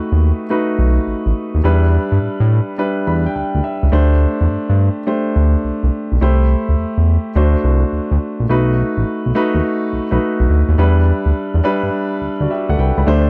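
New jack swing R&B at 105 BPM in E minor, this confident, bouncy clip, cut from a longer piece, rides a swung 16th-note feel over a progression moving from B7 through Em7, D7sus4, C6 and D7. A smooth, saturated synth bass blending sawtooth and square tones sits up front with a fast attack, sustained notes and a touch of vibrato, while an intimate concert grand piano adds polished, present accompaniment with deep bass, long sustain and audible action noise, plus a short fill from 2.8 to 3.9 seconds. The dry, close sound recalls a 1970s studio, and a new section begins at 8.5 seconds back on B7.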